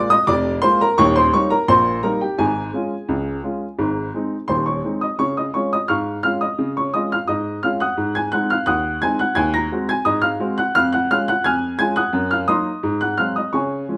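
A warm, woody upright piano with a boxy, short-sustained tone sits up front in this lively, playful ragtime excerpt in Db major at 86 BPM in a straight 2/4, playing solo across a range from Eb1 to Bb6 in a small room with moderate reverb, moving from an opening section through a second one that begins at 5.2 seconds, with chords such as Bb7, Eb7 and Ab7 leading back home to Db.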